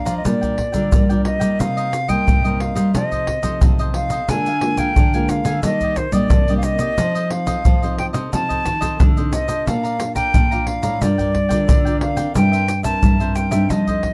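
An airy, up-front silver concert flute with vibrato and a soft attack carries the melody over crisp picked cavaquinho and a fingerpicked classical nylon-string guitar from the start, joined at 0.1 seconds by a full-bodied, thumb-plucked nylon-string guitar bass with fresh strings and close percussion of egg shaker, pandeiro and tight surdo, giving this playful, joyful samba and choro fragment in Bb major at 89 BPM a dry, detailed sound as the chords move from Gm7/Bb through Ebmaj7 and F7 to Bbmaj7.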